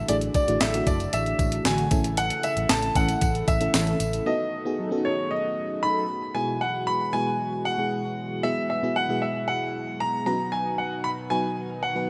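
A polished concert grand piano leads this uplifting, glossy 1980s-style pop excerpt at 115 BPM, carrying the melody up front with an intimate tone, audible action noise and a long sustain touched by subtle chorus. Beneath it, a full-bodied FM electric piano with tremolo and a fast, decaying attack supplies the accompaniment, while a shimmering, retro pulse-width pad holds sustained chords with a soft attack and a moving notch. A thumpy, sampler-style drum machine with a medium-tuned snare sits up front, joined by a foam-muted, round fingered electric bass and a jingly, close tambourine in the background. The bass drops out at 4.2 seconds and the drums and tambourine at 4.3 seconds for a break. Mellow synth brass, detuned and sawtooth-based with vibrato and chorus, adds background stabs from 0.6 to 6.0 seconds. The harmony moves from Dadd9 through A and B7 to Eadd9/B and B, all bathed in a lush hall reverb and bright digital production.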